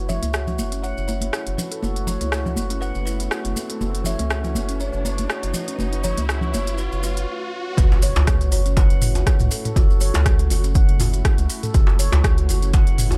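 A lightly swung sixteenth-note afro house groove in 4/4 drives this earthy excerpt from a longer piece, built on crisp-hatted, tape-warm electronic kit hits with rim clicks and toms, soft-handed bright congas, and grainy maracas. Underneath, a deep, round analog bass sits up front and pumps with the sidechain, while an ethereal, airy pad in the background holds sustained F#m7 and A/F# chords through ensemble chorus and built-in reverb. A ringing, meditative handpan spins arpeggios through delay and sidechain pumping, and a woody kalimba plucks a melody through a delayed, low-pass-filtered sweep as the opening builds. An electronic riser enters at 2.8 seconds, the groove stops briefly at 7.3 seconds, and at 7.8 seconds the drop lands with an impact, a punchy layered kick pushed to the front, and a vintage, band-limited djembe with metal rattles. The whole groove sits in a small-room ambience that gives the driving rhythm an intimate, physical feel.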